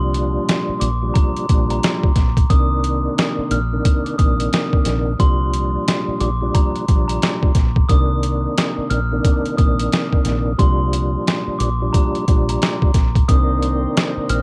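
A swung boom-bap groove at 89 BPM in 4/4 drives this dark, tough hip-hop excerpt in C minor, with the sampler-style drum kit entering at 0.1 seconds and sitting up front: a thumpy kick, a medium-tuned snare and hi-hat, all compressed, pitched down and gritty with a tape-warm character. Beneath it, a deep dub fingered electric bass stays low and round, foam-muted and punchy, thickened by transformer saturation. A clean tonewheel organ carries the accompaniment through a slow rotary speaker and chorus vibrato, filtered and dulled by cassette tape, moving between Gm7 and Cm9. Above, a glockenspiel played with rubber mallets rings out a soft, airy, bell-like melody high in its range, also filtered and run through cassette tape. At 13.3 seconds, as the harmony settles on Cm9, a mellow, flute-like second organ with audible key click slips in quietly in the background, and the dry, home-cassette sound keeps the whole thing close and lo-fi.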